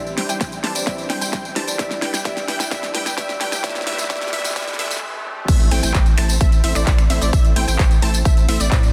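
A soft, boxy felt-muted upright piano with audible action noise and 12-bit sampler grit sits in the background beneath bright, detuned unison plucks playing arpeggios and a punchy supersaw stab riff under a filter sweep, opening a euphoric festival progressive house build-up in A minor at 130 BPM that moves from Cadd9/E to G. A layered pop kit with a fat snare, metallic hats, claps, snaps and tambourine plays a drum fill beside an up-front electronic kick, while a ringing hard-mallet vibraphone holds a single D5 and a very quiet riser and swell lead into a brief break. At 5.5 seconds the piano stops and the drop lands on Am with an impact and a deep, saturated sine sub bass, with sidechain pumping on the bass, plucks and stab, light digital ambience and a dense, heavily limited master.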